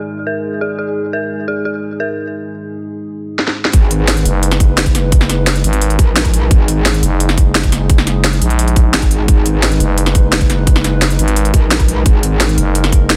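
A metallic, distorted wobble bass and a growling, thick FM bass drive this mechanical, futuristic slice of dark technical drum and bass at 173 BPM in G# minor. The wobble bass lands with the drop at 3.7 seconds alongside a tight electronic kick and a layered kit with a cracking snare and crisp hats, and the FM bass joins at 4.3 seconds. Before that, a deep, moody analog pad lays down sustained, chorus-soaked chords that pump under the sidechain and carry on to the end. Meanwhile an eerie, inharmonic detuned synth bell plays arpeggios with chorus, tremolo and digital delay, stopping by 2.1 seconds. A filter sweep builds throughout the opening, and the kit's drum fill at 3.4 seconds leads into the drop. The mix is dense and heavily limited, with little reverb.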